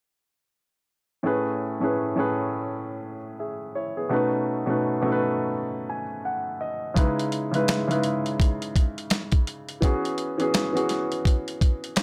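A warm grand piano opens this nostalgic, confident boom-bap hip-hop cut at 1.2 s, its short-sustained chords moving through Amaj7, B7, C#m7 and E6 at 84 BPM with a swung sixteenth feel, colored by cassette-tape grit and high- and low-pass filtering. The piano plays a fill from 5.5 s. At 7.0 s a compressed, pitched-down sampler-style drum kit drops in up front with a gritty, thumpy kick, a high-tuned snare and hi-hat, all sitting in a moderate studio reverb.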